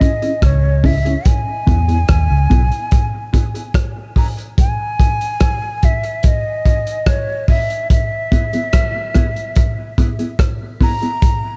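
A crunchy, saturated breakbeat kit sits up front in this deep, hypnotic dub reggae excerpt from a longer piece, its punchy kick, hi-hat and rim clicks rolled off on top in a small, dark room. A round, foam-muted electric bass appears only briefly, from 0.4 to 2.7 seconds, while a clean, compressed electric guitar with harmonic tremolo and dub echo carries the C#m and E chords, filtered by a sweep from 1.3 to 7.9 seconds. Above it all, a breathy, hollow jazz flute with vibrato and a soft attack plays the melody, trailing dub echo.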